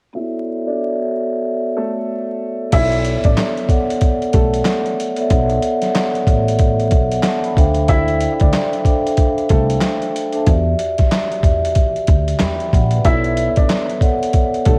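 Moody and tough, this boom-bap hip-hop cut at 93 BPM in B minor opens with a filter sweep over a boxy, short-sustain upright piano melody touched with tape echo and a dark, ringing soft-mallet vibraphone, both cassette-filtered, before a gritty, pitched-down sampler kit with a thumpy kick, handclaps and crash, and a woody pizzicato upright bass with tube saturation enter at 2.7 seconds to carry a swung groove through Bm11, Dm11 and Em7, all wrapped in vinyl crackle and small-room ambience.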